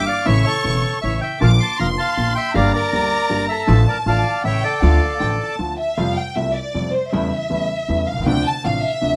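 This tense, dramatic tango excerpt moves at 158 BPM in a rubato 3/4, opening in D minor with a reedy, up-front bandoneon carrying the melody over a clear, slightly worn grand piano with deep bass and short sustain and a woody pizzicato upright bass. Alongside it, a close, bowed violin section sings an expressive second line full of vibrato and portamento. The bandoneon drops out at 5.6 s, and from 6.0 s the violins take a solo as the music shifts to F major, all within a moderate club reverb over a layer of vinyl crackle.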